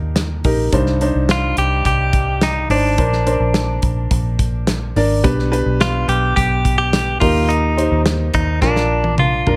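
A lightly reverberant mix opens this short cut from a dramatic, driving piano-led pop piece in C minor at 106 BPM, where a woody, boxy upright piano with audible action noise and plate reverb sets out chords moving from Eb through Cmadd9, Bbadd9 and G/B alongside a round, punchy, foam-muted fingered electric bass sitting up front. A dark, smooth studio drum kit with a tight kick and medium-tuned snare comes in at 0.2 seconds, and at 1.3 seconds a bright, twangy, direct-recorded clean guitar takes the melody, picked and compressed with spring and plate reverb. A drum fill closes the passage from 8.6 seconds as the harmony lands on Bb.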